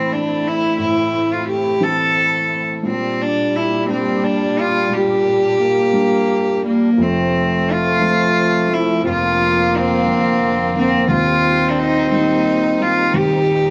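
A rich cello, played by one player, carries the melody from the start, bowed sul tasto with a soft attack and a pure, floating tone in plate reverb, over a mellow, thick-felt upright piano and a lush, smooth-topped studio string section holding sustained chords in the background. This intimate, heartfelt acoustic folk-pop ballad moves slowly in 6/8 at 58 BPM in F major, and a distant solo French horn with light vibrato adds a classical-style second line from 2.9 s. Around 7.0 s the harmony moves from Am and Gm/Bb to F, Bbadd9/F and Eb, all in a moderate small room, in a passage cut from a longer piece.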